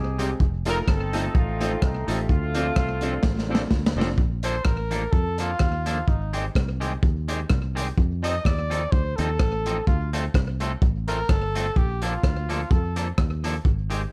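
The recording has a touch of reverb, with a crunchy, saturated breakbeat kit up front and a dark, round fingered bass close beside it. This is an upbeat, joyful ska piece in a swung 4/4, cut from a longer work. A distant, roomy horn section carries the opening melody with slapback echo and light vibrato. Meanwhile, a woody upright piano with audible action noise adds stabs from the background, also with slapback. A twangy, slightly broken-up picked electric guitar plays accompaniment throughout, and the drums close the first section with a fill. At 4.4 seconds a punchy, warm trumpet takes a pop-style solo with its own vibrato and slapback echo, over chords that move from Bbmaj7 through Abmaj7, F7 and Dm7.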